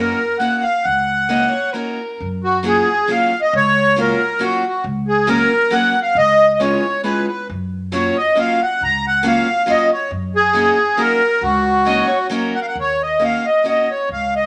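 A reedy accordion in light tremolo tuning carries the melody up front from the start, over a bright, boxy parlour steel-string guitar with audible finger squeak and a woody, thumpy pizzicato upright bass on gut strings, in a whirling, bittersweet musette waltz in F# major at 136 BPM. A dark violin with light vibrato and an airy bow adds an intimate second line in two brief passages, the first from 1.3 seconds, while the harmony moves through F#6, F#maj7 and C#7 before turning to Ebm7 near the end. A moderate large-studio reverb surrounds the group, and the guitar drops out at 13.9 seconds in this cut from a longer piece.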